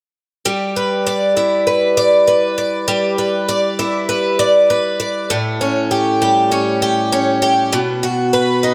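In a straight 4/4 feel, this dreamy, floating dream pop piece opens at 0.5 seconds with a solo picked twelve-string acoustic guitar, moving from G6 to A7 at 5.3 seconds and arriving on B at 7.7 seconds. The guitar sits up front, bright and shimmering with fresh strings, an octave-doubled ring, a slightly boxy body and a subtle chorus. A moderate plate reverb with a long tail surrounds it.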